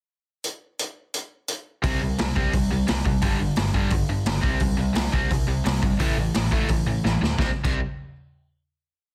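Punk rock at 173 BPM in C major, upbeat and rowdy, where a gritty, saturated garage drum kit with a medium-tuned snare and rolled-off top sits up front through a short pickup bar. From 1.8 seconds a bright, biting overdriven guitar, joined at 1.9 seconds by an overdriven hollow-body semi-hollow guitar, hammers out palm-muted eighth-note riffs over a driving, punchy picked bass in the background. A drum fill at 7.0 seconds leads into a final C5 chord, all within a dense, heavily limited modern master with light reverb.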